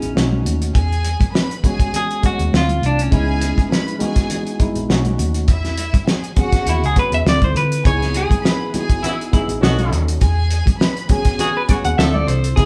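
A clean, picked electric guitar takes the lead throughout this short cut from a lush 1970s-style soul track, its melody colored by harmonic tremolo over a silky, cinematic progression that cycles through B7, E69, Dm7 and C#m7 with a gentle sixteenth-note swing. Beneath it sit a worn, slightly out-of-tune tine electric piano with light overdrive, a round, foam-muted fingered bass, an up-front cloth-damped drum kit with a fat snare and tight kick, and thick-skinned congas tucked in the background. Dark, sul tasto chamber strings add a soft-edged second line from 0.7 s, and a distant, roomy horn section joins with jazz-style stabs at 9.0 s, all captured as a band playing live in one room with moderate studio reverb.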